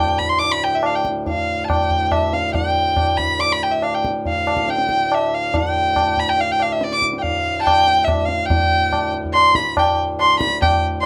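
In a straight 7/4 cycle, this solemn, meditative fragment of Hindustani classical music in raga Bageshri sets a dark, smooth violin with vibrato up front on the melody, between D5 and D6, over a reedy, breathing harmonium drone and low-tuned tabla with a short ring that joins at 0.2 seconds, all in a small room with moderate reverb.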